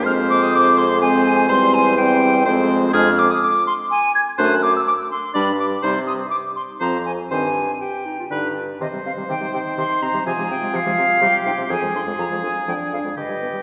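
Oboe, French horn, clarinet and bassoon begin together in this urgent, dramatic cut from a quick classical-period wind quintet movement in C minor, set in 3/4 at 124 BPM. The clear oboe takes the second line, while the horn with light vibrato and the close-miked clarinet supply accompaniment over a present, warm bassoon bass. From 0.1 s a silvery, pure flute carries the melody up front with expressive vibrato and a crisp attack, and a new section arrives at 8.8 s, all in a wet concert-hall reverb with a 2.0 s decay.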